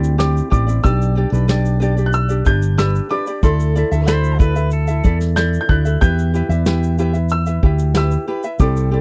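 A round, dark fretless electric bass sits up front in this wistful, tender acoustic pop piece at 93 BPM in E minor, joined by a soft brush kit with a punchy kick, shaker and snare, a light fingerpicked ukulele, a woody vintage upright piano carrying the high melody, a fingerpicked jumbo steel-string guitar with finger squeak tucking arpeggios into the background, and a bright, twangy pedal steel that slides in with volume swells from 4.1 to 5.2 seconds, all in a dry, close 1970s-style studio sound over Cadd9, G/B, Dsus2 and Em.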